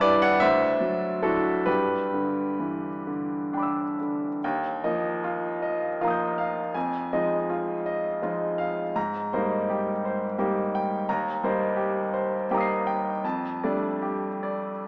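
Flowing in 6/8 with a free, rubato pulse, this impressionist solo piano piece drifts at an unhurried pace with a dreamy, luminous mood. A clear baby grand piano carries everything on its own, spanning from D2 up to C7, its intimate, up-front tone revealing audible action noise and a long, natural sustain. Colorful harmonies such as D9 and G6 open the passage before the music shifts to a new key center at 4.4 s, moving through Ebadd9, Fm7 and Abmaj9 toward Eb6 and F69. A wet concert hall reverb gives the notes a lingering halo, though the overall sound has the narrow character of a small speaker. Cut from a longer work, the passage ends at 14.9 s.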